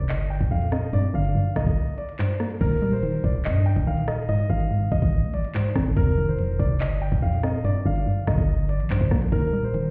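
A half-time drill groove at 143 BPM in 4/4 drives this cold, dark hip hop excerpt in G phrygian, where an up-front electronic kit with a knocking kick, crisp hats, handclaps, rim clicks and crash sits over a growling, buzzy 808-style bass, while a hollow, bouncy square pluck with chorus carries the accompaniment and a mellow, vintage baby grand piano with delay and long sustain plays the melody, all heard muffled as through a wall in a stone room, with a break at 1.8 seconds before the second section opens at 2.6 seconds.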